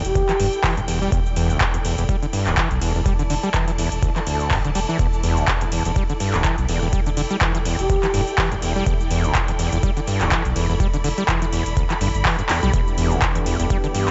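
A swung 124 BPM acid house groove in 4/4 and E minor, this trippy, raw excerpt is driven by a squelchy, distorted sawtooth acid bass riff with sidechain pumping, a round sine sub bass, an overdriven kick from 0.2 s and a booming analog drum machine with metallic hats, cabasa, handclaps and ride. A lush bowed string section hangs behind, a breathy flute-like lead flickers briefly at the start and again at 7.8 s, a drum fill lands at 12.5 s and a detuned sawtooth pad with chorus and tremolo enters at 12.7 s, all under light reverb.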